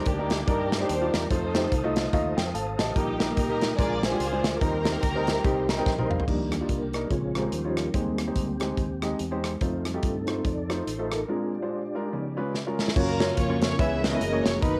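A home cassette recording with light reverb gives this uptempo, jubilant gospel excerpt at 144 BPM in Eb major an intimate, tape-colored sound, with a swung 4/4 feel. A smooth-topped, softly bowed string section carries the melody over boxy, up-front grand piano accompaniment with audible action noise and piano fills, a round, punchy fingered electric bass, and an airy, polished country drum kit with a punchy kick and drum fills. Throughout, a mellow, flute-like tonewheel organ sustains chords through a slow rotary speaker and chorus vibrato; from 6.3 seconds it steps forward for a solo, and the strings return at 13.0 seconds.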